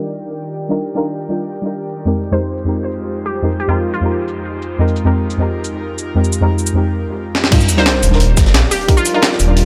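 A dry, close mix with a low-pass filter sweeping across the opening gives this cut from a longer liquid drum and bass piece an uplifting, lush feel at 176 BPM in Eb major. From the start, a deep, nasal chord stab with chorus and tape echo sits up front over an airy, breathy pad whose slow attack and long release hold out Ebmaj9 and Bb13sus4/F chords. A gritty, pitched-up jungle sampler-style kit, overdriven and re-recorded in a large room, drives the groove with snare, hi-hat, cabasa and crash. A crystalline wavetable pluck carries the short melody with chorus and delay, entering at 2.3 seconds and returning later. After a brief break and a drum fill, the drop lands at 7.5 seconds with a tight, layered electronic kick, a sub drop impact in the background, and a dark-toned, rolled-off breakbeat kit with high-passed hats and snare further back. At 8.0 seconds a rumbling, detuned saw bass with beating, saturated lows arrives up front beneath the returning Ebmaj9 chord.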